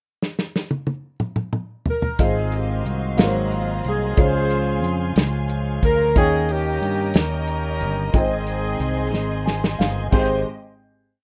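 A slow six-eight groove from a dry soul drum kit, with dark cymbals, a tight kick and a medium-tuned snare, opens this short, jubilant gospel piece with a fill across the pickup bar. A mellow horn section enters up front at 1.9 seconds, carrying a tight, motif-based melody of call phrases with a gentle vibrato. At 2.2 seconds the rest of the band arrives: a fingered electric bass, direct and amped, plays a gospel line with slides and chromatic approach notes, while a woody upright piano, its action noise audible, holds drop2 chords with grace notes. Further back, a bright tonewheel organ, lightly overdriven through a fast rotary speaker, adds held chords, and a distant, lush string section bows a smooth sustained pad. The drums and piano both fill just before the final chord, and the whole piece has a hopeful feel in a rough home-demo mix with light reverb.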